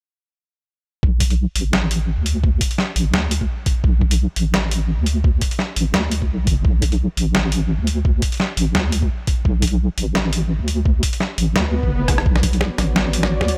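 Half-time drum and bass at 171 BPM in B minor, this cinematic, spacious excerpt sits on a single B minor chord with a lightly swung sixteenth-note feel. From 1.0 seconds a deep, dark wobble bass anchors the low end, its detuned square and sine tones thickened with chorus and kept compressed and up front. A pitched-down, gritty electronic kick delivers a thumpy punch alongside a sampler-style boom bap kit of hi-hat, rim click and a medium-tuned snare, both drum parts sitting forward in the mix. Near the end an electronic swell sounds at 11.7 seconds, and a drum fill follows at 12.1 seconds. At 12.5 seconds a tense, string-like drone enters on sustained chords, its sawtooth unison layered with noise and vibrato, softened by a slow attack and built-in reverb, and pumping against the sidechain, all set in a digital ambience.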